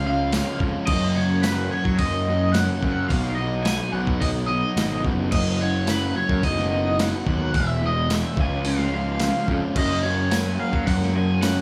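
A light small-room reverb surrounds this brief indie rock excerpt in F# major, jangly and wistful at 108 BPM in a straight 4/4. A dark, double-tracked fuzz guitar riff sits up front beside a growly, overdriven picked bass, while a bright, overdriven guitar carries the melody through phaser and slapback echo. At 0.3 seconds a gritty, compressed sampler-style kit enters, re-recorded in a large room, with a thumpy kick, medium-tuned snare, hi-hat and crash cymbal, alongside a jingly tambourine tucked in the background, as the chords move from C# through F#, B and E before settling on F#.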